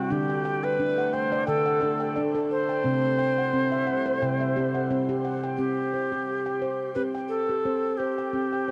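A dreamy, calm world meditation piece opens with an airy wooden Native American-style flute carrying the melody up front, its chiff and vibrato lifted by shimmer reverb and tape echo, over ringing handpan arpeggios played with soft fingertips at 88 BPM in C lydian with a gentle 16th-note swing. Behind them a deep, moody detuned sawtooth pad with a sub octave holds sustained chords in the background until 5.5 seconds, as the harmony moves from D to C. This fragment of a longer work has a cassette home-recording character and a wet booth ambience.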